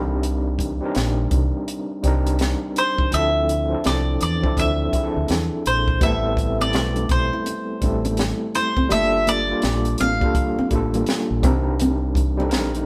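R&B with a neo-soul lean, this short cut from a longer piece has a smooth, late-night mood and a relaxed swung groove in 4/4. An overdriven tine electric piano sits up front with a barky, gritty tone through a combo amp and a medium tremolo, voicing lush ninth chords such as Cm9, Dm9, Am9 and Gm9. Beneath it, a deep dub fingered electric bass stays dark and round, while a compact cocktail drum kit, dry and close, pairs a punchy kick and high-tuned snare with hi-hat. A bowl-back mandolin carries the melody from 2.8 seconds, its bright, picked double strings standing forward in the mix. At 6.0 seconds a fingerpicked nylon-string guitar adds a full-bodied second line in the background, with audible finger squeak. The band sounds as if playing together in one room, held in a moderate studio reverb.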